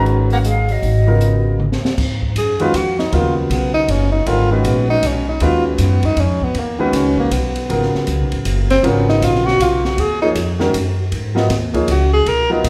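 Swinging in a brisk 3/4 at 158 BPM, this modal jazz excerpt in G# dorian has a searching, cool mood, built on a G#m11 chord. A breathy metal flute carries the melody at the start with a brief straight-toned phrase, soft in attack and with lifted highs, before falling silent at 1.6 seconds. A drum fill then leads into a tenor saxophone solo from 2.0 seconds, the horn mellow and up front, with vibrato, subtone and scooped notes. Beneath it, a grand piano accompanies with an intimate sound, deep bass and audible action noise. A pizzicato upright bass on gut strings sounds woody and thumpy, while an acoustic drum kit sits further back, its dark cymbals, high-tuned snare and boomy kick heard across the kit. The whole performance rings in the lush reverb of a church or concert hall.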